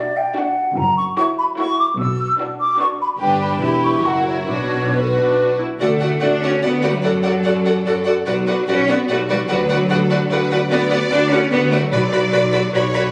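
Two violin sections, violas and an airy, up-front flute open this stormy, dramatic classical-period orchestral excerpt at a quick 147 BPM in a rubato 3/4, with cellos and double basses joining moments later. The flute's second line drops out at 5.6 s, just before the music turns from B minor to D major at 5.8 s. The expressive melody violins sit in the background above intense cellos and focused basses, and timpani enter briefly at 11.9 s, all caught in a recital hall's reverberant ambience as heard from a phone in the room.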